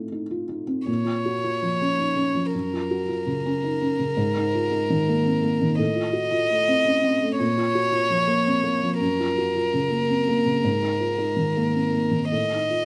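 A rich, close violin played sul tasto with light vibrato and an airy bow carries the melody from 0.9 seconds, touched by a slapback echo, over a felt-muted upright piano whose dark, mellow chords and audible action noise sit up front in this fragile, melancholic neoclassical fragment in Bb minor, a rubato 3/4 at 110 BPM cycling through Bbm, Gbmaj7, Absus2 and F7/A, captured dry outdoors with little reverb.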